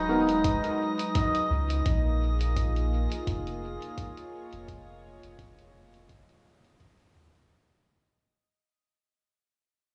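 Spacious and hazy, this fading ambient dub excerpt at 85 BPM opens on a veiled, cup-muted trumpet melody with light vibrato and dub echo that stops at 1.8 seconds, over a smooth, detuned sawtooth pad with chorus moving from G#m7 to A#m7, a deep, round sub bass up front, and a glassy, drifting sine-tone texture with chorus and its own reverb, while a muffled, pitched-down electronic hi-hat with dub echo enters at 0.3 seconds and an overdriven soft electronic kick at 0.4 seconds, all set in an echo-heavy mix with plate reverb.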